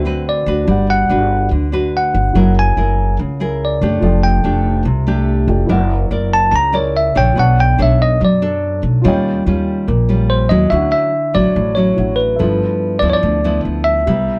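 Lightly reverberant and dark in tone, this sunny, romantic bossa nova excerpt moves at 143 BPM in 4/4, with a bell-like tine electric piano sounding bright and clean through its built-in speakers as it carries the melody and takes a solo until 10.7 seconds. Up front beside it, a full-bodied nylon-string guitar is fingerpicked and a woody, thumpy upright bass is played pizzicato, while a mellow baby grand piano sits intimately in the background with audible action noise and short sustain. Chords such as D13, F#7b13 and Bm9 pass by before the music moves into a new section on Dmaj9 at 10.7 seconds.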